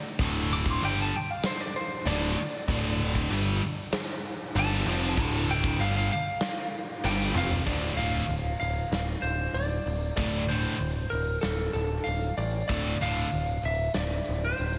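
A lightly driven lead guitar opens this hard rock excerpt at 0.0 seconds, its slightly broken-up, compressed tone soloing over D minor and trailed by digital delay. Almost at once the band falls in at a steady 96 BPM in a straight 4/4: a growling, overdriven picked bass sits up front with a punchy, direct bite, and a huge arena drum kit brings a punchy kick, a medium-tuned snare, toms, hi-hat and bright crash cymbals in a pumping room. Two picked rhythm guitars share the low riff: a warm, overdriven semi-hollow guitar tucked in the background and a scooped, high-gain guitar with bright distortion, both carrying slapback echo. A drum fill arrives at 7.0 seconds, ushering in the second section, where the lead guitar carries on with the melody. The riffing guitars drop out at 13.3 seconds, leaving lead, bass and drums to close out a driving, menacing passage bathed in a lush hall reverb and a big arena sound.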